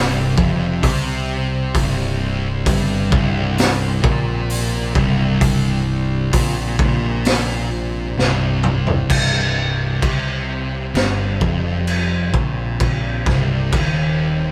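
A sound with light reverb, like a band playing live in one room, carries this heavy, sludgy stoner and doom metal excerpt. Two dark, picked fuzz guitars, one set in the background, grind out the riff over a growling, overdriven electric bass, while a gritty, saturated garage drum kit sits up front with a punchy kick and a rolled-off top, entering at 0.4 seconds and playing a fill from 8.2 seconds. Behind them, a tense, string-like drone with a slow attack, vibrato and its own reverb sustains chords as the music moves into a new section at 9.1 seconds.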